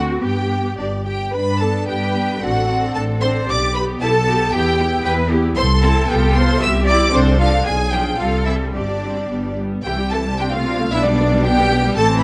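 A lively, graceful excerpt from a classical-period movement for string orchestra opens with an up-front violin melody sung with light vibrato over a lush second violin line, distant rich violas, expressive cellos and focused double basses, its rubato phrasing settling into a new key centre at 5.6 s and captured by close, detailed microphones in light reverb.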